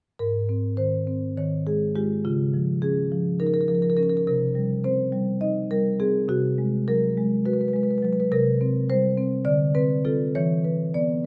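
Contemporary classical for solo marimba, this flowing, warm passage from a longer piece moves in a rubato 7/8 at 207 eighth-note beats per minute in Ab major. The marimba, played with medium mallets, sits up front with a dark, smooth tone across its span from Ab2 to Eb5. Its harmonies travel from Abadd9 through Db69 and Cm7 toward open fifths on C and E, and close, detailed microphones capture it inside a moderate recital-hall reverb.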